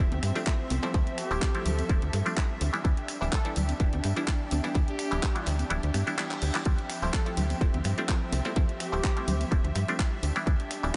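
Filtered disco house in D dorian at 126 BPM, this nostalgic, groovy excerpt from a longer piece rides a lightly swung 16th feel, with its top end rolled off and a light reverb around it. A punchy electronic kick sits up front, entering at 0.5 seconds, while a house kit of finger snaps, handclaps and hi-hat, with sidechain pumping on the hats, and soft-handed congas and tambourine in the background, also pumping with the sidechain, fill out the groove. A snappy FM bass with a metallic attack and tube saturation drives the low end, as a hollow, nasal muted clav through a phaser and a dark, veiled con sordino string section breathe with the sidechain over Dm11 and Em7/D. From 1.2 seconds a mellow trumpet section with light vibrato and delay floats quietly in the background. Around 5.7 seconds the kick drops out, a very quiet electronic reverse cymbal sounds from 6.0 seconds, and a short drum fill leads back in at 6.7 seconds.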